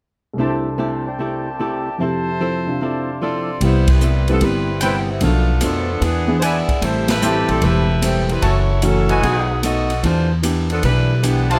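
Closely miked with light reverb, this energetic, brassy big band swing at 149 BPM in C major opens with an intimate concert grand piano, a dark, hollow-body archtop guitar and up-front trumpet stabs with a smooth top. A tight saxophone section soon carries the melody with light vibrato, and at 3.6 seconds a woody pizzicato upright bass and a polished drum kit with a punchy kick join in. The full band strikes accents at 3.8 and 7.0 seconds over a chord progression that moves from Cmaj7 through E7 and Am7 to Em7.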